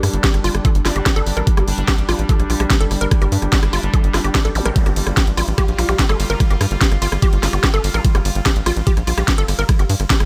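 Psychedelic trance at 146 BPM in G minor, this short cut from a longer piece has an alien, hypnotic mood and a dry, close sound. A layered drum kit with a cracking snare, bright hats, ride cymbal and rim click, overdriven and re-recorded in a small room, runs from the very start, and an up-front, knocking electronic kick with overdrive enters at 0.2 seconds to drive the straight 4/4 pulse. Beneath it, a tight, punchy sequencer bass built from sawtooth and square waves drives low between G1 and G2 with a mellow, decaying filter pluck. A woody, wave-folded pluck riff with a noisy edge and dark chorus, delay and sidechain pumping plays between F4 and Bb4, while a bubbling, resonant sawtooth texture of random filter steps sustains chords in the background, softened by chorus and its own reverb and shaped by sidechain pumping. The whole passage sits on a G5 chord, and a very quiet electronic zap flickers by at 4.6 seconds.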